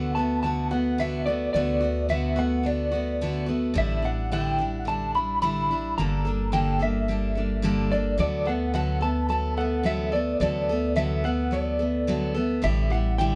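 Acoustic folk in a nostalgic, warm mood, with a slightly broken-up, lo-fi electric guitar through a small old amp carrying the melody with tremolo over a full-bodied, up-front picked jumbo steel-string acoustic guitar and a woody, thumpy pizzicato upright bass on gut strings, the trio set in a moderate studio reverb across this 13.4-second excerpt.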